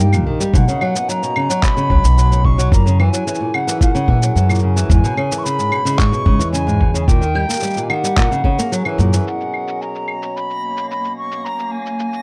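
Warm and pastoral, this short folktronica excerpt moves at 110 BPM in a straight 4/4, settled in B major. A bright, reedy baroque flute carries the melody from a distance, its pure wooden tone marked by vibrato and a soft attack and trailed by delay, while a mellow pedal harmonium breathes sustained chords underneath with a boxy, small-room character. A dark, fingerpicked flamenco guitar spins delayed arpeggios, and an up-front upright bass plays woody pizzicato lines until about 9.2 seconds. The beat comes from sampler-style electronics: a compressed, pitched-down, thumpy kick from 0.5 seconds, plus muffled, low-pass-filtered cabasa, claves and handclaps. At 10.3 seconds a reversed, detuned, granular texture swells in with a dreamy glow over a closing passage that moves from Bsus2 to F#, all set in light reverb within a dark, warm production.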